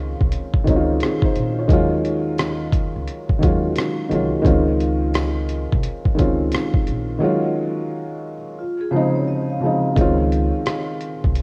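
A gritty, overdriven sampler-style drum kit sits up front in this nostalgic, cosy lo-fi hip hop excerpt, its thumpy kick, hi-hat and rim click compressed and swung at 87 BPM in 4/4. A felt-muted upright piano, soft and intimate with audible action noise and a vintage cassette tint, carries the Db major chords, moving between Dbmaj9 and Ebm11. Underneath, a woody pizzicato upright bass with steel strings adds a warm, thumpy low end, while a jingly, very quiet tambourine glints close by. The drums fall away from 7.2 to 10.0 seconds, and at 8.6 seconds a metallic, ringing vibraphone played with medium mallets and its motor off drifts in briefly, airy and touched with tape echo. The rough home-demo mix is bathed in a lush hall reverb that gives the small, cosy arrangement a hazy sense of space.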